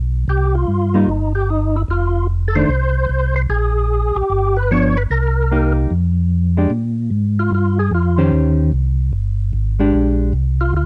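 Soul jazz organ trio in a greasy, swinging Bb mixolydian groove at 149 BPM, cut from a longer piece, with a mellow, round tonewheel organ carrying the bass line through slow rotary speaker and chorus vibrato, a fat, percussive tonewheel organ on fast rotary playing the melody, a tonewheel organ solo from 6.7 seconds, and a dark, fingered hollow-body jazz guitar comping from 0.9 seconds, all up front in a close, dry recording.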